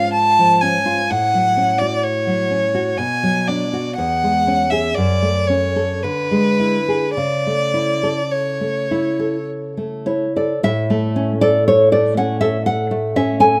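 Serene and lyrical, this romantic duo for violin and classical guitar moves in an unhurried three-beat metre with a flexible, rubato feel. A single bowed violin carries the melody up front, its tone rich and smooth, with vibrato and an even line that sits in a fairly high register. Beside it, a fingerpicked nylon-string guitar supplies the accompaniment, acoustic and warm, ranging from deep bass notes up into the treble. The harmony drifts through minor and seventh colours before settling toward home, and the violin falls silent at 9.5 seconds, leaving the guitar alone to close out a brief new section from 10.6 seconds. A light studio reverb surrounds the pair, and the rough home-demo mix gives the cut-off fragment an intimate, unpolished quality.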